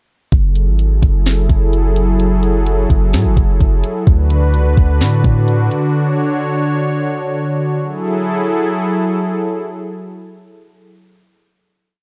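A detuned sawtooth pad with chorus and sidechain pumping opens this melancholic, ethereal cloud-rap piece in F# minor at 128 BPM in half-time, joined from the start by a sparse electronic beat of soft kick, sharp snare and tape-toned hats and by a deep, sine-like 808 bass whose long sub notes follow the kick with pitch slides, moving from F#m9 to D6 before bass and drums stop near 5.8 seconds and the pad sustains alone over a final F#m9 until 10.9 seconds in a dark, dry mix.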